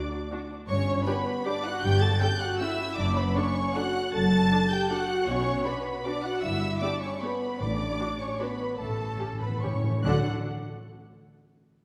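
A classical orchestral ballroom waltz in D major, this sweeping, festive excerpt moves in a rubato 3/4 at 137-169 BPM. Lush bowed violins carry a smooth, even melody over a distant second violin line and sustained French horn chords with a vintage tint, while violas add portamento accompaniment and close cellos join chamber double basses on the bass from 0.7 s. Articulate timpani with hard mallets enter at 7.6 s and play a fill from 8.8 s before the D5 arrival at 10.0 s, all set in a scoring-stage reverb.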